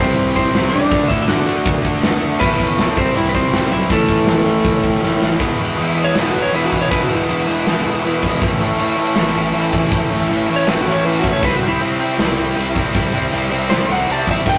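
A slightly broken-up, compressed lead guitar carries the melody with a touch of delay, stepping into a solo at 5.4 seconds, dropping out at 8.2 seconds and returning at 10.6 seconds. This is rowdy, energetic punk rock at 159 BPM in 4/4, cut from a longer piece. Beneath the lead, a bright, up-front distorted electric guitar and a raw, overdriven garage guitar pound out picked riffs over chords moving through C, D, A and E, while a growly fuzz bass sits in the background. A big acoustic rock kit with a punchy kick, medium-tuned snare, hi-hat and sparkling crashes fires a fill just before the solo, where the groove drops into half time. The whole take has the rough feel of a rehearsal room, with tube saturation and a moderate stone-room reverb.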